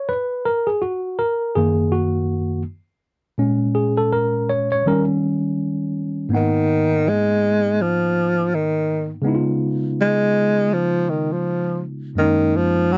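A loping 4/4 groove with a lazy swing on the sixteenths sets up this smoky, nocturnal hip hop piece, cut from a longer work. For the first 6.3 seconds a tine electric piano plays alone, its worn, slightly out-of-tune tone lightly overdriven and heard as if through built-in speakers, sitting up front as it moves through chords such as A#m7 and D#7. At 6.4 seconds a breathy alto saxophone takes the melody, close-miked and soft in attack, with a jazz-style subtone and gentle vibrato that give it a hushed intimacy. The sax stays in a narrow low register while the piano continues beneath it over a G#m9 to C#7 progression, closing on F#6. The sound is a dry, close 1970s-style studio recording with only a light touch of reverb.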